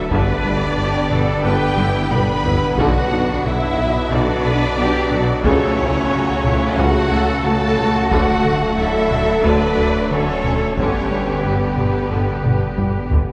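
Vast and futuristic, this cinematic hybrid of orchestra and electronics moves in a straight 4/4, cut from a longer piece. It unfolds through G, Bm, F#m/C#, D and G, with a lush, expressive violin melody carrying the top over a second violin line and portamento-tinged violas in the background. A focused cello section, a very quiet double bass section, distant French horns, trombones and tuba join a warbling, detuned analog pad, a deep sine sub bass and a dark analog bass riff with a filter sweep. Heavy-stick taiko drums in the background fill at 1.8 and 12.4 seconds, and the whole is bathed in the long reverb of a church or concert hall.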